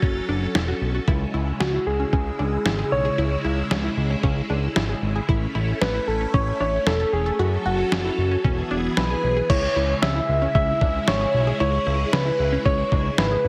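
Bright and upbeat, this synth-pop excerpt moves in a straight 4/4 over a chord progression that shifts from F#m through C#m, A and E, with a round, gentle FM lead carrying the melody in chorus and digital delay above a swirling, vintage string machine washed in ensemble chorus and phaser. A lush, detuned unison pluck plays arpeggios through delay in the background, while a fat, wave-folded analog bass with filter sweeps sits up front beside a muffled, pitched-down sampler-style kit with a thumpy kick, medium-tuned snare and crash, the drums stopping at 13.3 seconds. Moderate plate reverb and heavy multiband compression give the whole mix a squeezed, radio-like sound.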